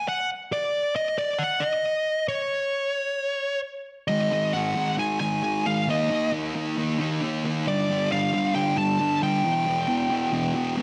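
A big arena sound, bathed in a lush hall reverb with digital ambience, frames this dark, brooding rock fragment cut from a longer piece, moving at 135 BPM in a straight 4/4. A dark, distorted fuzz lead guitar opens alone, carrying the melody between Db5 and A5 with a slapback echo trailing its picked notes, sitting up front. At 4.1 seconds a thick, double-tracked fuzz guitar enters with a heavy riff spanning E2 to Eb4, its picked tone warm and saturated, also placed up front. Beneath the two guitars the harmony shifts through Ab5, Eb5 and G5 power chords before settling on E minor near the close. The pairing of the echoing lead and the doubled rhythm part gives the passage a weighty, ominous edge until it breaks off at 10.8 seconds.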